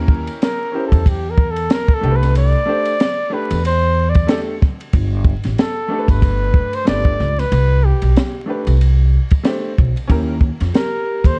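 Smooth and warm, this swung jazz-hop fragment puts a breathy, lightly vibrato-tinged flugelhorn up front over a dark, high-tuned-snare cocktail drum kit, bright, woody pizzicato upright bass and a slightly detuned vintage upright piano, with a metallic soft-mallet vibraphone ringing in at 10.7 seconds beneath small room reverb and vinyl crackle.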